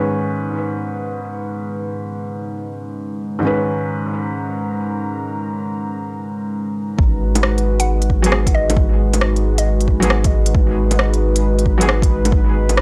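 A felt-muted upright piano opens this ghostly, wistful future garage excerpt, its soft, intimate tone carrying vintage character under tape echo and a gentle sidechain pump. Half a second in, a dark analog pad settles in alongside it with detuned sawtooth depth, slow-blooming chords and a chorus shimmer, pumping along with the piano. At 7.0 seconds the groove arrives: a punchy, overdriven electronic kick and a round, soft dub sub bass, joined moments later by an organic electronic kit of bongos, crisp filtered hi-hats and rim clicks with a swung sixteenth-note feel. Briefly, a woody, mallet-like synth pluck adds a mellow melodic phrase coloured by chorus, phaser and tape echo before ending at 9.9 seconds. The harmony moves from a hazy add-nine chord over G# to a minor seventh, and the dry, gritty cassette-tape sound keeps the whole fragment close and lo-fi.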